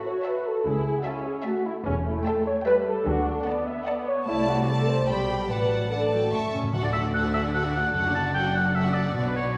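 A roomy scoring-stage reverb places this short cut from a quick, spirited and graceful classical-period orchestral movement at a distance, moving in 3/4 at 149 BPM in D major. Clear violins carry the melody over a second violin line, with dark, woody violas providing accompaniment and up-front mellow French horns holding sustained chords until 6.5 seconds, while intimate cellos and soft-attack double basses enter beneath at 0.7 seconds. Round, soft-mallet timpani add a brief fill at 6.3 seconds, and a vintage-toned oboe with vibrato joins as a second line from 6.8 seconds as the music settles on D.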